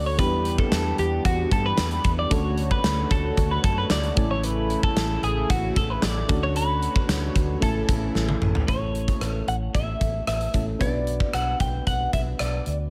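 1980s-style pop in A major at 113 BPM, glossy and uplifting, with a bright, twangy twelve-string electric guitar carrying the melody up front over soft, warbling electric-piano-like synth keys with chorus and a round, foam-muted fingered electric bass. A brassy, detuned analog pad with chorus holds sustained chords in the background until 8.7 seconds, as a drum fill from the gated, big-room 80s kit with its tight kick and tambourine leads into a new section moving from A to Bm. The mix sits in light reverb, and this is a short excerpt cut from a longer piece.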